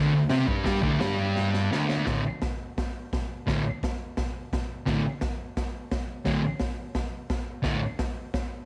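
A straight 4/4 pulse at 172 BPM drives this raw, swaggering garage rock excerpt, where a thick, double-tracked fuzz guitar riff opens on D5 and runs until 7.8 seconds, joined at 0.3 seconds by a gritty, punchy acoustic drum kit of hi-hat, kick and medium-tuned snare with a rolled-off top and a pumping small-room sound, which plays a fill at 1.4 seconds, both parts sitting up front under a moderate echo-chamber reverb.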